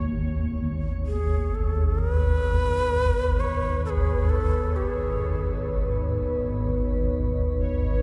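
Dark ambient drone in free time, dark and unsettling, cut from a longer piece and set in a huge reverb. A swarming, nasal drone sits low and up front from the start alongside a bubbling stepped-filter texture in the background with chorus and shimmer reverb, while a deep, warbling vintage pad enters at 1.0 seconds holding sustained chords over a G#m harmony. A breathy, close-miked bamboo shakuhachi carries the melody from 1.1 to 5.7 seconds with vibrato, trailed by shimmer reverb and a diffuse ambient delay.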